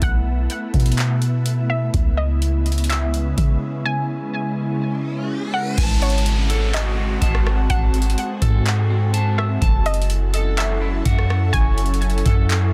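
A booming analog drum machine sits up front with a deep kick, metallic hats, handclaps, rim clicks and crash cymbal, its tape-warm sound re-recorded in a small room. This short excerpt of hazy, ethereal cloud-rap moves at 125 BPM in a half-time 4/4 feel. A soft, round 808-style bass with a sine-like tone anchors the low end, while an airy pad of detuned sawtooth and triangle voices holds sustained chords, bathed in ensemble chorus and reverb and pumping against the beat. A warbly, dusty pluck carries the melody with a lo-fi, mellow character shaped by chorus, a low-pass filter and digital delay, and a faint, breathy wind-like noise texture drifts in the background. A break arrives at 3.9 seconds, electronic riser and downlifter effects appear at 4.7 seconds, and at 5.8 seconds a twangy, slightly broken-up electric guitar joins with picked arpeggios through subtle chorus, filtering and delay. 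The harmony moves through B7sus4, C#m7, G#7b9 and F#m7, set in a digital ambience with a dense, heavily limited modern master.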